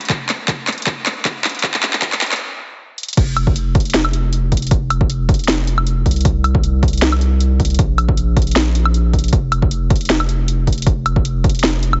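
Future bass at 156 BPM in a half-time, lightly swung 4/4 feel, playful and lush, opens with a build-up where an overdriven trap kit of sharp snare, bright hats, handclaps, woodblock and crash fills beside a punchy, layered electronic kick, breaks off in a stop at 2.4 seconds, then drops at 3.2 seconds as a deep, thick, saturated sine sub bass pumps within the F1 to C2 range under the up-front drums, all heard through a heavily compressed, thin radio-like sound with light reverb, in a short cut from a longer piece.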